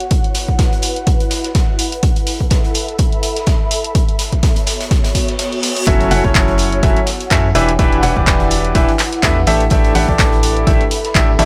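Bittersweet and soulful, this piano house excerpt moves at 125 BPM in 4/4 with a light swing on the sixteenths. An ethereal, airy pad built from detuned sawtooth and triangle voices sounds from the start with ensemble chorus, built-in reverb and sidechain pumping, carrying the harmony from E5 through A5 to B5. A punchy analog drum machine supplies handclaps and hi-hats, an up-front electronic kick drives the groove, and a raw garage kit with rolled-off, smooth hats and snare sits in the background. The kick drops out as a reverse cymbal plays in the background, and at 5.9 seconds a brilliant baby grand piano arrives up front with audible action noise, long sustain, dub echo and sidechain pumping. A hollow, percussive, organ-like FM bass enters with it, and together they move through F#m7, Em7 and A7sus4.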